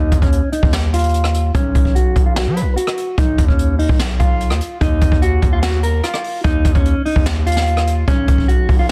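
A half-time trap groove at 147 BPM in Eb minor drives this dark, hard-hitting hip hop excerpt, with a jazz brush drum kit entering at 0.1 seconds, its high-tuned snare carrying soft clipping and its boomy kick sitting up front in a small, roomy space. A distorted 808-style bass, saturated and aggressive with a noise layer and fast attack, anchors the low end. A mellow, clean electric guitar plays the fingered melody through lush chorus and a low-pass filter, with a filter sweep over its first 4.8 seconds as the harmony moves between Ebsus2 and Bsus2 under a dense, heavily limited master.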